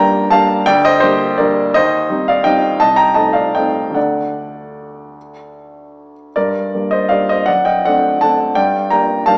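A solo grand piano opens on a G minor chord, setting a wistful, bittersweet tone for this short classical waltz in 3/4, cut from a longer piece. The tempo moves between 144 and 177 BPM with a rubato feel, so the lilt of the waltz stretches and gives. The harmony passes through Eb6, a diminished chord over C and D before settling back on G minor, then turns again through D7 over F# to close on G minor at 8.6 seconds. The piano spans from C2 up to Bb5 and sits up front in the mix, with a present, polished tone and a touch of warmth. A moderate scoring-stage reverb adds space around the instrument, while the overall sound has a slightly boxed-in, small-speaker quality.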